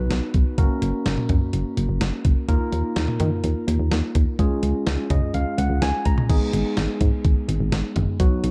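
Dark, lightly reverberant digital ambience frames this cool, melancholic synth-pop excerpt, where a worn, slightly out-of-tune tine electric piano bathed in shimmer reverb moves through B, Gb, Ebsus2 and Db and adds a fill from 4.9 to 6.3 seconds before landing on Abm as a new section begins, over a punchy, round FM bass with a fast attack and decaying notes and a gritty, compressed sampler-style soul drum kit with a thumpy kick, medium-tuned snare, hi-hat, toms and crash cymbal, all three parts sitting up front.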